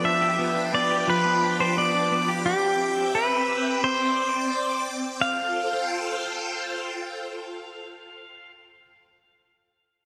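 A twangy pedal steel guitar leads this floating, dreamy dream pop excerpt at 87 BPM in F lydian, its fingerpicked slide melody sitting up front with volume swells and digital delay. A swirling, vintage string machine holds sustained sawtooth chords through ensemble chorus and phaser, while a clean, hollow-bodied semi-hollow electric guitar fingers chorused, delayed arpeggios until 3.0 s. The chords move from G7 through Cadd9 and Gsus4 to Fadd9 at 5.2 s, where a new section begins, all set in a lush hall reverb with bright 1980s-style digital production.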